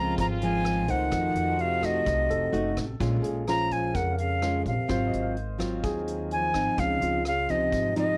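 Bossa nova at 127 BPM in Bb minor, melancholic and smooth, this short cut from a longer piece sets an airy, reedy flute up front over a dark trombone second line, clear grand piano, fingerpicked nylon-string guitar, woody pizzicato upright bass and a vintage brush kit with punchy kick, hi-hat and rim click, while a muted, nasal French horn section holds metallic sustained chords until 3.0 seconds, all in light reverb with a cassette-tape cast.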